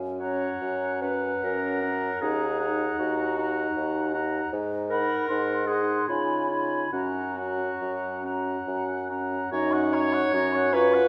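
Classical slow romantic movement for wind quintet in F# major, tender and warm, moving at 67-80 BPM in a rubato 3/4, where a hollow, pure silver concert flute sings the melody over a smooth-topped oboe second line, a punchy, present clarinet and a roomy French horn in accompaniment, and a mellow bassoon bass entering at 0.0 s, all bathed in a wet scoring-stage reverb as the harmony passes through D#m, G#m7 and C#9 before settling back on F# near 6.9 s in this brief passage cut from a longer piece.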